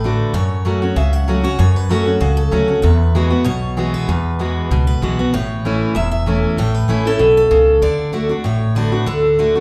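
Up front with audible finger squeak, a full-bodied dreadnought acoustic guitar picks the accompaniment through F#m, Eadd9, A and D beneath a bright picked melody on a second dreadnought and a woody, dark pizzicato upright bass, all three playing together across this lively, rustic, lightly swung bluegrass excerpt, recorded live in one room and bathed in a wet, large studio reverb.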